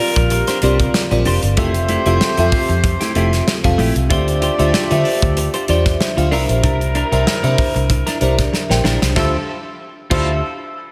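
A lush hall reverb gives this polished 1980s jazz-funk pop excerpt a big arena sound, its nocturnal, urban mood carried at 95 BPM in D minor with a light sixteenth-note swing over chords moving from Bb69 through Fmaj9, Dm11 and C9. A bell-like, sparkling FM electric piano with subtle chorus and slapback echo plays the accompaniment from 0.0 seconds, alongside a distant horn section on a second line with delay and slapback echo, while a clean, compressed electric guitar with lush chorus plays a riff. Underneath, a dark, round, foam-muted fingered bass and an up-front studio drum kit with a punchy kick and airy cymbals drive the groove, the drums playing a fill from 8.5 to 9.2 seconds before the music settles back on Dm11.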